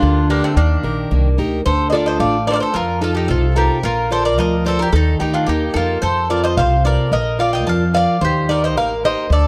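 A metallic Greek bouzouki leads this brooding, cool piece of Greek folk music, its picked double strings, some doubled at the octave, carrying the melody up front between C4 and A5. Beneath it, a bowl-back mandolin picks a brilliant second line on its own paired strings, while a plugged-in steel-string acoustic guitar supplies boxy picked accompaniment, with an audible finger squeak. A woody upright bass, played pizzicato on steel strings, anchors the low end between A1 and F2 and sits close in the mix. The band moves at 110 BPM in a straight 2/4, opening on Gm and Eb before shifting at 1.7 s into a longer passage that runs through Dm, F7, Bb, Eb, F, Bb and Eb. A light reverb and a dark, warm production give this excerpt from a longer piece a shadowed, intimate sound.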